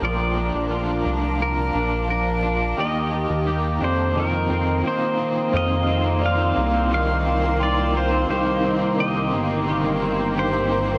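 Dream pop at 87 BPM with a dreamy, blissful mood, where a bright pedal steel guitar sings the melody with fingerpicks, slide and delay over a twangy, slightly broken-up electric guitar's chorused arpeggios, a crunchy double-tracked overdriven guitar with tremolo, a shimmering, ethereal pad with octave-up sparkle, and an up-front, glossy chorused synth bass, while a delicate, bell-like celesta enters in the background at 2.8 seconds, all bathed in a lush hall reverb as the chords move from Bbmaj7 through Ebmaj7 and F7sus4 to Cm7.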